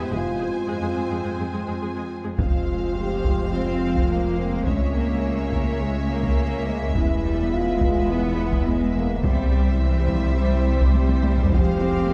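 A straight 4/4 pulse at 105 BPM carries this vast, brooding stretch of hybrid orchestral and electronic film score in F harmonic minor, cut from a longer piece. From the start, bowed violins with vibrato trace a second line and bowed violas with vibrato add accompaniment, as a mellow, distant French horn section and a warbling, nostalgic lo-fi pad with chorus hold sustained chords over Fm, while rich cello and double bass sections anchor the low end. At 2.4 s the music broadens: a clear, focused studio violin section takes the melody, a deep, punchy sine sub bass with a pitch-drop attack joins the bass, and a taiko ensemble played with hard sticks sits close and dry in the background. The harmony moves through Dbm, E and C, and a drum fill at 11.0 s leads back to Fm. A scoring-stage reverb places the ensemble further back in the room, giving the strings a lush, symphonic breadth.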